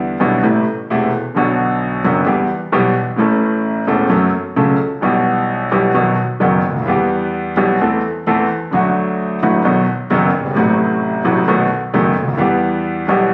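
A concert grand piano and an upright bass begin together at the very start of this short tango, both playing through to its close at 13.3 seconds. The mood is melancholic and dramatic, and the time is pushed and pulled in a rubato feel over a four-beat metre. The up-front piano carries the accompaniment with a warm, smooth, vintage tone, deep in the bass and short in sustain. Far behind it, the bass is plucked pizzicato on steel strings with a woody sound, sitting low in the background. The harmony moves steadily through chords such as Am, Bm, F#m and a tense B7 before settling on Em. Moderate studio reverb surrounds the pair, and the passage, cut from a longer piece, was recorded on a phone in the room.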